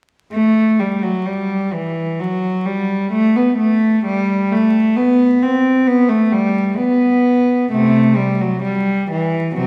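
A lone bowed cello begins at 0.3 s, playing a classical, baroque-style suite movement in 4/4 with a flexible, rubato feel. The mood is serene yet dance-like, and the single player stays between C3 and C4 for the whole passage. The instrument has a rich, reedy gut-string tone in period style, and it sits close and up front. Around it, the recital hall adds a generous, wet reverb that places the listener further back in the room, while a vinyl crackle runs beneath. The fragment is cut from a longer piece and ends at 9.7 s.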